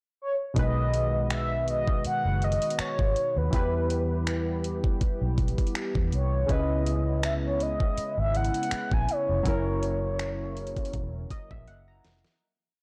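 A slow, lightly swung R&B beat at 81 BPM sets a tender, smooth mood in B major, with the knocking kick, deep gritty snare, metallic hi-hat rolls and finger snaps of an electronic drum kit sitting up front alongside a round, foam-muted fingered electric bass that weaves a syncopated line with ghost notes and chromatic approach notes. Over this, a horn-like synth lead with vibrato and chorus sings a motif-based melody, while vintage analog keys hold spread, warbling chords and a shimmering pulse-width pad sustains beneath, moving through B6, Em, C#m7 and F#7. The whole recording is lightly reverberant yet blown-out and overdriven, and it fades from 9.5 seconds as the keys add a fill and the drums close with a fill at 11.7 seconds.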